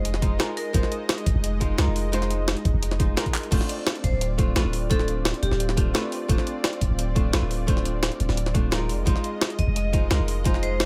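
Lush and dreamy, this liquid drum and bass excerpt rides a straight 4/4 pulse over chords that move from Fm7 to Dm7 at 3.5 seconds and back to Fm7 at 8.9 seconds. A deep, sine-toned 808-style bass sits up front with long, decaying notes, while an overdriven electronic kick knocks alongside a gritty, pitched-up jungle sampler kit of high-tuned snare, handclaps, hi-hat and crash cymbal, with a drum fill at 3.3 seconds. A dark, clean hollow-body archtop guitar picks out compressed accompaniment through dub echo, and a thick, nasal sawtooth pad holds detuned unison chords with chorus and a sidechain pump. In the background, a hard-mallet vibraphone adds smooth, ringing phrases with slow motor vibrato and dub echo, first appearing at 0.6 seconds. A digital ambience wraps the whole mix.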